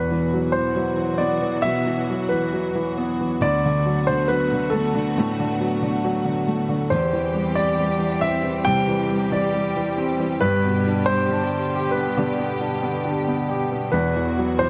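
A straight 4/4 pulse at 68 BPM carries this longing, heartbroken pop ballad in E minor, where an intimate, vintage-toned concert grand with audible action noise sings the melody up front over a clear, polished second grand piano's accompaniment, while lush bowed strings with vibrato hold sustained chords and a full-bodied, fingerpicked steel-string acoustic guitar with finger squeak plays arpeggios in the background, all set in light small-room reverb as the harmony moves through Esus2, D6, C/E and G.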